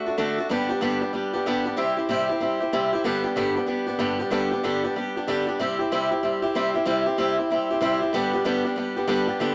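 A swung, rollicking rock groove at 189 BPM in G major drives this rowdy excerpt, where a lone picked swing-style acoustic guitar, bright and boxy and sitting up front in a moderate studio reverb, moves through D, G and C chords from 0.0 to 9.5 seconds.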